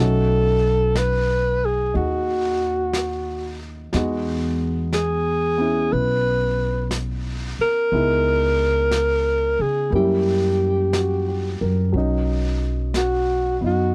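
A dry, close 1970s-style studio sound with light reverb frames this melancholic, intimate jazz ballad excerpt, moving at a slow 60 BPM with a gentle swing in 4/4 over rich ninth chords that settle on B. A mellow alto saxophone carries the melody up front with vibrato and scooped notes, while a concert grand piano accompanies with audible action noise and short sustain, and a woody pizzicato upright bass anchors the low end. From 1.0 s, a dark, smooth vintage brush kit of snare and hi-hat sits softly behind them, its top end rolled off.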